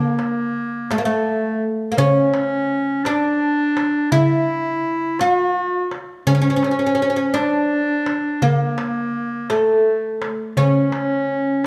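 Oud and bright clarinet sound together from the first moment of this stately, warm excerpt of an Arabic maqam ensemble piece in D maqam suznak, moving at an unhurried 56 beats per minute in a straight 6/8. The fretless oud carries the melody, its plectrum-plucked double strings giving a woody, deep voice that sits up front, ranging from A3 to a lowered F#4. The clarinet, played in a classical style, adds a second line across the same span, its bright, soloistic tone also close to the listener. A clay-shelled darbuka with a natural skin head joins at 0.2 seconds, adding a vintage, band-limited pulse beneath the two melodic voices. The group sits in a moderate recital hall with a reverb tail of about 1.7 seconds, and the passage runs as a single section until it is cut off at 11.7 seconds.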